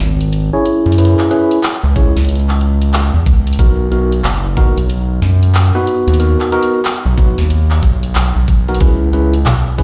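Glitch hop at 92 BPM in C# dorian, playful and swaggering, where a gritty, tube-saturated synth bass drives under cracking snare, bright hats, handclaps and tambourine, tine electric piano stabs through a combo amp enter at 0.5 seconds with sidechain pumping, dub echo and a filter sweep over C#m7 and Bmaj7 chords, a knocking electronic kick joins at 2.0 seconds, and a snappy, metallic FM slap bass lands at 9.5 seconds, all in a big, reverberant room sound cut from a longer piece.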